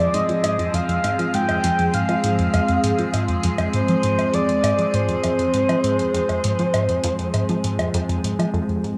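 Hypnotic and mysterious, this ambient, sequencer-driven space music excerpt in F dorian moves at 100 BPM over a held F minor chord, with a breathy, flute-like synth lead carrying the melody through tremolo, chorus and analog delay, an up-front evolving wavetable pad sustaining chords with phaser and its own reverb, a tight, nasal sequenced synth driving a low riff through a filter sweep, and quiet electronic hi-hat and woodblock with metallic hats, all set in a wet concert hall on cassette tape.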